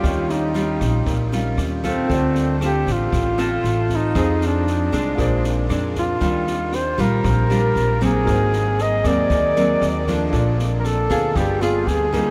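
A straight, even bossa nova groove in 4/4 carries this short, relaxed and romantic passage cut from a longer piece. An open jazz drum kit supplies kick, rim click and snare, with a boomy kick and a high-tuned snare, while a woody, thumpy pizzicato upright bass on gut strings anchors the low end. A fingerpicked nylon-string guitar, full-bodied and touched with finger squeak, is dressed in a lush chorus, and a very quiet baby grand piano with short sustain adds delicate accompaniment. Up front, a warm flugelhorn sings the melody with light vibrato and a smooth top, trailed by a diffuse ambient delay. The harmony moves through rich extended chords such as Eb9, Ebmaj9 and Ab9 before arriving at G7b9, and the whole mix is soaked in a huge, dreamy reverb.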